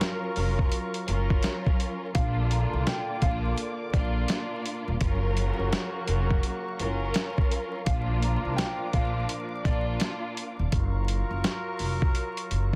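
A swung, 84 BPM boom-bap hip-hop groove in 4/4 drives this confident, warm fragment, built on a gritty, compressed sampler-style kit with a thumpy kick and medium-tuned snare up front, joined at 0.4 seconds by a woody, growly pizzicato upright bass. Over chords moving between Gbmaj7 and Bb, a bowed string section with vibrato and portamento plays a cassette-tinged accompaniment until 10.7 seconds, while a darker, lush string ensemble sustains chords in the background and a mellow, tight jazz horn section adds delayed stabs. From 2.1 to 9.9 seconds a bright, fingerpicked nylon-string guitar carries the melody with digital delay, sitting back in a dry, dense, heavily limited mix dusted with vinyl crackle.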